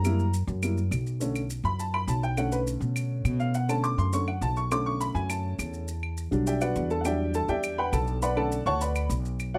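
Afro-Cuban jazz at a brisk 205 BPM in B minor, sultry and fiery, with a boxy upright piano soloing up front over F#7b9, Bm9 and Em9 harmony, a dark pizzicato upright bass with steel strings also up front, woody claves set in the background and grainy, mellow maracas, all captured close and dry with detailed microphones in this brief cut from a longer piece.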